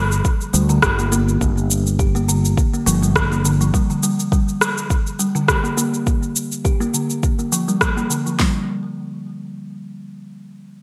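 A woody, close-miked kalimba sits up front in this meditative, hypnotic organic downtempo excerpt, plucking short, full arpeggios with a thumbnail attack through a low-pass filter and digital delay, while a filter sweep moves across it for the opening section. Underneath, a round, punchy fretless electric bass carries tube saturation, subtle chorus and sidechain pumping over a G minor chord, then drops out at 3.7 seconds as the harmony shifts to Dmadd11. A deep house drum kit with a deep kick, fat snare and metallic hats holds a 103 BPM pulse in 4/4 with a light 16th-note swing, layered with a tape-warm electronic cabasa and rim click bathed in gated reverb. At 8.4 seconds the chords give way to a brief unharmonized passage as the drums and kalimba stop shortly after. The whole mix has a bright, 1980s-style digital sheen, with light reverb and digital ambience around the parts.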